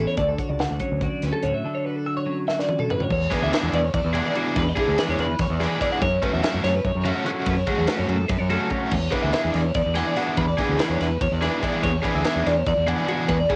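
A brisk 7/8 pulse at 288 BPM counted in eighths, played straight, drives this bright, intricate slice of math rock and midwest emo, cut from a longer piece and captured as a home recording on cassette with light reverb. At the start, one twelve-string electric guitar plays a twangy, clean accompaniment over a Dmaj7 until 3.1 seconds, while a second twelve-string electric guitar, mellower and up front, picks arpeggios through a phaser for the whole passage. A growling fingered electric bass, overdriven and forward in the mix, holds down the low end, and a crisp fusion drum kit in a small room, with a high-tuned snare and punchy kick, works across hi-hat, ride, crash and toms, rolling a fill just before the shift at 3.1 seconds. From 3.3 seconds a cranked stack guitar, double-tracked and gritty with overdrive, takes up a riff as the harmony moves through E9, F#m11 and back to E9. Cassette tape coloring softens the guitars and drums, lending the busy, ringing arrangement a homespun haze.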